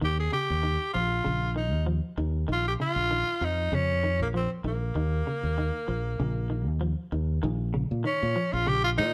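A band playing live in one room, touched by light reverb, drives through a funky afrobeat groove at 97 BPM in Bb dorian, its sixteenths lightly swung over a steady Bbm chord, in a brief cut from a longer piece. Up front, a gritty tenor saxophone with pop-style vibrato carries the solo melody, while a dark, round fingered electric bass anchors the low end and a clean, picked semi-hollow electric guitar adds bright, hollow-bodied arpeggios. All three parts play throughout, with the music moving into a new section at 7.4 seconds before stopping at 9.1 seconds.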